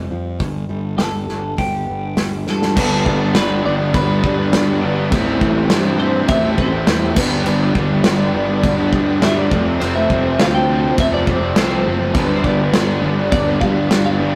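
A straight 4/4 pulse at 102 BPM drives this brooding, angsty quiet-loud alternative rock passage, cut from a longer piece, where a warm picked steel-string acoustic guitar plays arpeggios over round fuzz-overdriven bass, a punchy, up-front indie drum kit with dark cymbals in a small pumping room, and a twangy, clean, compressed twelve-string melody, until a drum fill at 2.5 seconds leads at 2.8 seconds into a background riff from three guitars (one crunchy, one hollow-body and double-tracked, one tight and bright), while a very quiet, lush vintage string machine sustains chords moving through G, Am7 and F, the whole take carrying a rough rehearsal-room sound with saturation.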